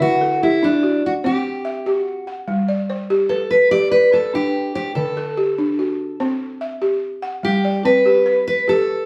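Hypnotic and warm, this West African string and xylophone piece in G major moves at 97 BPM in a straight 12/8, with a full-bodied, fresh-stringed fingerpicked steel-string acoustic guitar carrying the melody up front over woody, buzzing balafon arpeggios struck with soft rubber mallets, the two playing live together in one room through a wet studio reverb as a D, C, G progression cycles twice across this 9.1-second cut from a longer piece.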